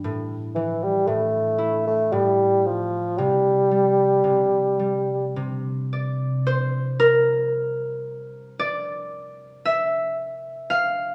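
Longing and mournful, this Celtic slow air drifts in a rubato 3/4 at about 57 BPM, cut from a longer piece. A concert harp carries the accompaniment from the start, its fingerpicked, ringing acoustic tone sitting up front and spanning from A2 to F5. A mellow bassoon takes the melody between 0.6 and 5.4 seconds, playing in a classical style with light vibrato and a smooth top, staying within a narrow low range close to the listener. The chords move from A5 to C5 before the harmony drops away, and from 6.5 seconds the harp plays alone to the close at 11.1 seconds. A wet recital hall reverb wraps both instruments, lending the sound the spacious air of a church or concert hall.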